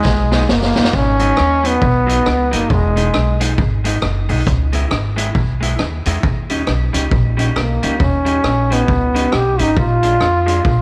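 A clear trombone with light vibrato and a smooth top leads this short, mischievous ska cut, its slapback echo giving the melody a playful bounce as it sits up front, stating a phrase from the start to 3.4 seconds and returning at 7.6 seconds. Underneath, a street-band drum kit with a boomy kick, medium-tuned snare, rim clicks and hi-hat opens with a fill before settling into a swung, energetic groove, its rolled-off top lending a rounded, small-room character. An upright bass played pizzicato on gut strings adds a woody, thumpy low end close to the listener. Further back, an electric guitar through a small old amp supplies slightly broken-up, compressed, lo-fi accompaniment, bathed in spring reverb and slapback echo. The harmony moves through minor-seventh, major-seventh and dominant chords, ending on A#7 at 9.8 seconds, and light studio ambience wraps the band together.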